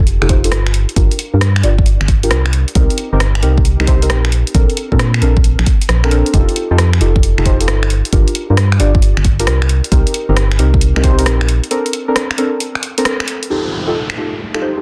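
A late-night, moody two-step garage cut taken from a longer piece, swinging on its 16ths with a dense, heavily limited modern sheen. A hollow, organ-like FM bass sits up front with a fast, percussive attack and dark decay, while a punchy, tape-warm electronic kick hits hard beneath it until the two drop out at around 11.2 and 11.6 seconds for a short break. A layered house kit of finger snaps, hi-hat and rim click, re-recorded in a large room, carries through with soft clipping on the snare. Deep, mellow chord stabs warble through chorus and tape echo, their soft vintage tone shaped by a filter sweep as they cycle through F9, Gm7, Cm7 and Bbmaj9. A band accent lands at 13.1 seconds, and an up-front electronic downlifter closes the passage from 13.5 seconds as the harmony returns to F9, all set in light reverb and digital ambience.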